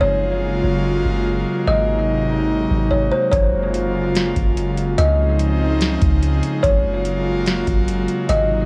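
A half-time hip hop groove in atmospheric cloud-rap style drifts in a blissful, floating mood, with a soft, round 808-style bass and a breathy, detuned pad pumping under chorus, while a woody, plucked kalimba plays the melody through a low-pass filter and analog delay, carrying on as a booming analog drum machine with deep kick, crisp snare and metallic hats joins at 3.3 seconds, the kalimba, pad and drums carrying a cassette-tape tint amid light digital ambience in this home-recorded excerpt from a longer piece.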